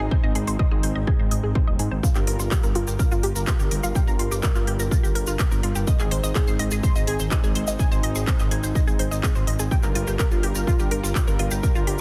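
A dark, driving melodic techno passage opens at once with a soft-edged, detuned sawtooth pad holding sustained chords in the background, a lush, punchy unison pluck spinning arpeggios through flanger and tape echo, and a deep, rumbling detuned saw bass with a beating, mellow body. The pad, pluck and bass all breathe with sidechain pumping, while the pad also carries a gentle chorus shimmer. A heavy, tape-warm electronic kick sits up front, joined almost immediately by a layered techno kit of handclaps and smooth hats. At 2.0 s a grainy, bright acoustic cabasa enters, adding a small-room rattle on top. The harmony sways between Ab and Gm7, and the dense, heavily limited mix stays dry throughout this short cut from a longer track.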